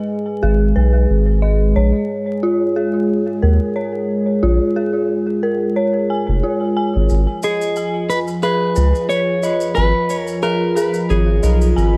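A 90 BPM trip hop groove in 4/4 with swung sixteenths sets a smoky, brooding mood in G# dorian, moving from G#m to A#m7 and back to G#m at 7.1 s, where maracas and triangle slip in quietly from a live room. A moody sawtooth analog pad with a sub octave holds sustained chords under eerie, inharmonic FM synth-bell arpeggios treated with chorus and tape echo, while a round, soft dub sub bass sits prominently beneath. From 7.4 s a clean, picked electric guitar carries the melody with gritty 12-bit sampler texture and dub echo, all set in an echo-heavy mix with light reverb and vinyl crackle in this fragment of a longer piece.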